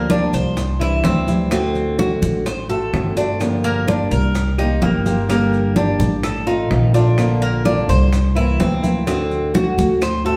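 A straight 4/4 Cuban son and guajira groove rests on a dark, thumpy gut-string upright bass played pizzicato up front, with background congas with a thick, hard-hand skin, round low-tuned bongos and grainy, saturated maracas, plus very quiet woody claves, entering a split second after the start. A fingerpicked flamenco guitar with fresh strings and audible finger squeak carries the accompaniment up front, while a picked Cuban tres spins metallic, double-string arpeggios, giving this fragment of a longer piece a nostalgic, sultry mood. The sound comes from further back in a large studio with a wet reverb.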